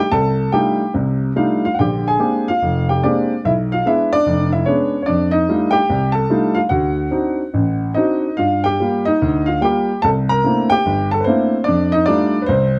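Close, detailed microphones place a grand piano up front in a moderate club reverb, giving its tone a smooth, vintage glow. This is solo jazz with a swinging, playful mood, moving at 146 BPM in 4/4 with a swung eighth-note feel loosened by rubato. The piano carries everything alone across the full 12.8 seconds, ranging from a deep F1 up to Bb5 in F mixolydian, tuned to A4 = 444 Hz. The harmony is rich with extended and altered colours, moving from F13 through Bb13 and Bdim7 back to F13, then D7b9, Gm7 and C13 before settling back on F13. This is a short, warm-toned passage cut from a longer piece.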